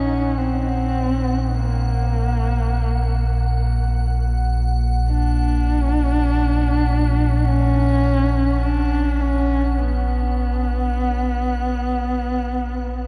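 Ambient music in free time, cavernous and ominous, where a deep, rumbling drone sits up front beneath a husky, nasal horsehead fiddle singing a bowed melody with vibrato and portamento through delay, while a faint, crystalline glass pad with chorus hovers high above, all bathed in a huge, dark reverb over a Bbaug chord for the full 13.1 seconds of this piece cut from a longer work.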